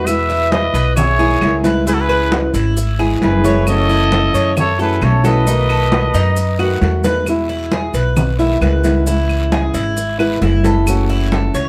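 A growling, raspy trumpet carries the melody of this relaxed Cuban son and guajira groove, shadowed by a breathy, bright jazz flute in the background, while a fingerpicked flamenco guitar with finger squeak, a picked tres with metallic double strings and a woody, thumpy pizzicato upright bass sitting up front lay down the accompaniment. Ringing, vintage-toned congas played with hard hands lead the percussion, with small-room claves, a close guiro and grainy maracas tucked behind them. The trumpet and flute stop at 6.8 seconds, leaving the guitar, tres, bass and percussion to carry the rest under light reverb.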